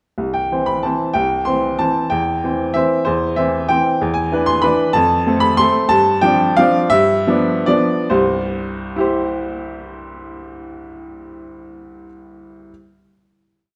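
A bright, woody vintage upright piano plays a single-line melody over a waltz bass in this short, sparkling and graceful classical piano waltz in C major and 3/4, moving with a rubato feel between 137 and 198 BPM, slowing from 5.4 s before settling on a final C chord at 8.1 s, with the up-front piano set in moderate recital hall reverb within a dark production.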